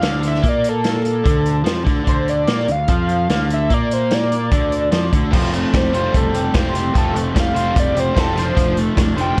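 A screaming, sawtooth-edged synth lead carries the melody from the start, riding over a biting overdriven guitar riff, a fuzzed picked bass and an up-front vintage drum kit with a tight kick and rolled-off top, in a bittersweet, cool indie rock excerpt at 147 BPM in D minor. At 5.3 seconds the harmony moves from D minor to Fadd9 as a very quiet, buzzy combo organ adds sustained chords and a bright background guitar riff arrives with analog chorus and tape echo, while the gritty lead turns into a vibrato-laden solo. Light reverb and the worn, warbling pitch drift of old cassette tape give the whole recording a faded, lo-fi cast.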